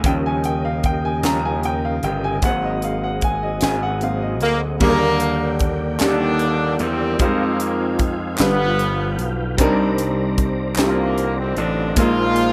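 A rough home demo mix with light reverb captures this slow, reverent yet jubilant gospel passage in 6/8, cut from a longer piece and moving at 50 BPM in dotted quarters with a straight feel. A boxy, up-front baby grand piano carries the accompaniment throughout and takes a solo passage in the opening 4.8 seconds, while a tonewheel organ holds sustained chords in the background, lightly overdriven and colored by chorus vibrato and a slow rotary speaker. Underneath, a bright, punchy electric slap bass with gritty overdrive sits up front beside an airy, polished fusion drum kit featuring a high-tuned snare, tight kick, hi-hat and crash cymbal. The harmony settles into Eb major from 4.8 seconds, moving from Ebmaj7 through Fm7, G7 and Cm9 before resting on Bb7sus4. At 4.4 seconds a warm pop-style horn section enters with the melody, playing loosely with light vibrato and octave doubling, and from 6.0 seconds to 11.1 seconds hollow group handclaps from a small room add a human lift in the background.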